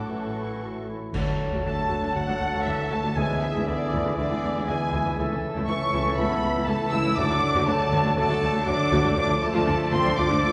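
A dark, lush violin section carries the melody through this restless, urgent excerpt of a fast, dramatic romantic orchestral movement, with a bright oboe, a pure silver flute, a punchy clarinet and a softer second violin section weaving second lines above a mellow bassoon, focused violas, vintage-toned French horn chords, ringing harp arpeggios and a rich cello and woody double bass foundation, while clear trumpet stabs, trombone chords, dark-cymbal crashes with bass drum and calf-headed timpani strike together at 1.1 s, the crashes ending by 2.1 s and the timpani by 3.9 s, all set back in a wet, roomy scoring stage.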